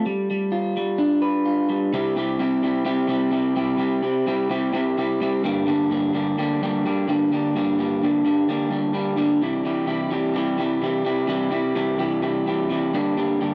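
An electric guitar played through a small old amp carries this short rock excerpt alone from start to finish, its picked tone slightly broken-up, compressed and placed up front, with a tape echo trailing behind it. The mood is jangly and upbeat, moving in a straight 4/4 feel. The guitar spans a range from G2 up to B4, opening on a G7 chord before settling into a new section at 1.9 seconds that shifts between C and Gm. The sound carries the character of a home recording on cassette, set in a small room with moderate reverb. As a fragment cut from a longer piece, it ends on a Gm chord at 12.9 seconds.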